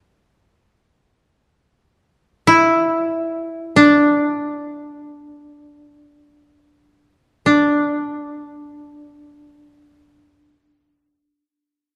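This still, austere excerpt of Japanese traditional chamber music opens in quiet before a solo koto enters at 2.5 seconds. It moves in free time, and the pace slows through the first 7.5 seconds before a second passage takes over until the recording's cut-off near 12 seconds. Played with fingerpicks, the koto sounds woody and dry, sitting up front and staying within a narrow span from D4 to E4 until it falls silent at 11.4 seconds. A moderate stage-like reverb surrounds the instrument, and the dark, warm production lends the austere mood a hushed weight.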